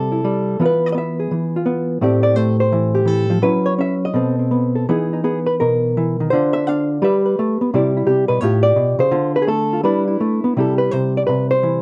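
Solo jazz on a lone hollow-body electric guitar, relaxed and playful, taken from a longer performance that runs just under 12 seconds. The guitar is the only part and plays from the first moment, fingered rather than picked. Its dark, clean tone is gently compressed and sits up front. The playing moves between a loose swing feel on the eighth notes and freer rubato phrasing, spanning a range from low bass notes to a bright upper register. The harmony is colorful, passing through seventh, ninth and altered chords before a short closing passage that begins at 10.6 seconds and settles on a C6 chord. A moderate club ambience adds a brief, natural room tail around the instrument.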